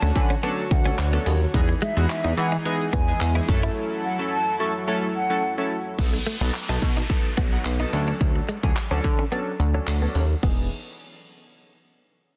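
This summery, euphoric dance-pop excerpt opens with a mellow, hollow silver concert flute carrying the melody through a dub echo, over a shimmering pulse-width pad whose sustained chords pump against the beat alongside a glossy, chorused synth bass that sits up front. A bright, clean electric guitar, recorded direct and set in the background, picks a compressed riff through analog chorus, while chorused retro synth keys add detuned, decaying accompaniment. A house drum kit arrives at 0.2 seconds with a punchy kick, bright hats, handclaps and a crash, its snare softly clipped, and a grainy egg shaker rustles behind until 3.8 seconds. The flute and pad drop away by 6.0 seconds, when a downlifter and a filter sweep enter for the second section, moving the harmony from B7 back toward Dmaj7 before it settles on Emaj7. The mix carries light digital ambience and a dense, heavily limited modern master.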